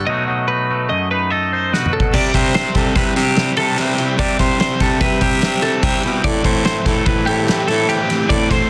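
A dry, dense and heavily limited modern mix carries this restless, wistful math rock and midwest emo fragment at 146 BPM in a straight 5/4, cut from a longer piece. A bright, compressed twelve-string electric guitar picks arpeggios throughout while a raspy, gritty baritone saxophone with light vibrato holds down the bass up front, joined at first by a clean, twangy electric guitar over a B7 chord. A loose, punchy acoustic drum kit with dark cymbals and a pumping room enters with a fill at 1.7 seconds, and at 2.1 seconds a double-tracked, crunchy overdriven guitar riff takes over as the harmony moves through Cmaj7 and Am7.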